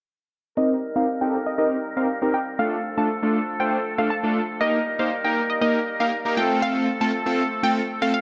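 A moderate, lush hall reverb surrounds this dark, confident, energetic pop fragment in C dorian at 119 BPM, moving through Cm7, Dm, Eb and F under a filter sweep that runs from 0.6 to 8.2 seconds. A fat, detuned sawtooth polysynth sits up front with bold, chorused accompaniment, while a round analog pluck with a noise layer carries the melody through chorus and digital delay. Beneath them, a distant woodwind section holds sustained chords with light vibrato in a classical style.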